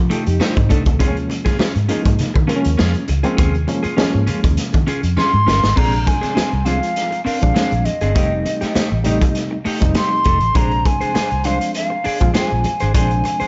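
A strutting, straight 4/4 funk groove at 100 BPM is driven by a gritty, saturated garage drum kit with a boomy kick and a round, foam-muted fingered bass, while a barky reed electric piano stabs through overdrive and fast tremolo, a slightly broken-up guitar adds spring-reverbed accompaniment, low-tuned congas and a jingly tambourine sit very quietly beneath, and as a drum fill begins at 5.2 seconds a hollow, close-miked concert flute enters to carry the melody with tape echo over F9, Eb9sus4 and Bb9 chords in a dark, light-reverb production.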